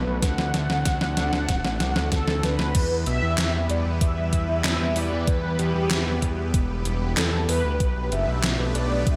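A cinematic, nocturnal synthwave excerpt opens on a dark, round synth brass melody with chorus, vibrato, cassette-tape colour and digital delay, set over a lush, detuned unison pad carrying a filter sweep and a fat sawtooth bass, with both pad and bass pumping to the sidechain. A drum fill runs through the opening until 2.8 seconds, and from 2.8 seconds the harmony moves from Em to Bm7 at 7.8 seconds. Beneath it, a thumpy, overdriven kick and an up-front gated 80s drum machine with snare, handclaps, hi-hat and crash sound re-recorded in a large room, all under light digital ambience.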